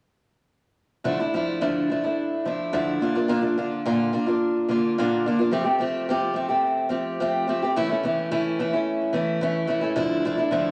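Reflective and dusty, this short rock passage is cut from a longer piece and moves at 108 BPM in 4/4 with a straight feel, in D minor. A single picked acoustic archtop guitar plays alone from 1.0 to 10.7 seconds, set up front with a boxy tone and audible finger squeak. Its part spans Bb2 to G4 and carries a cassette-tape coloring with tape echo. The chords move from Dmadd9 through Bb, Fadd9 and A/E before returning to Dmadd9 at 10.0 seconds. The whole thing sits in a wet small room with a short reverb, captured as a home recording on cassette with a touch of studio ambience.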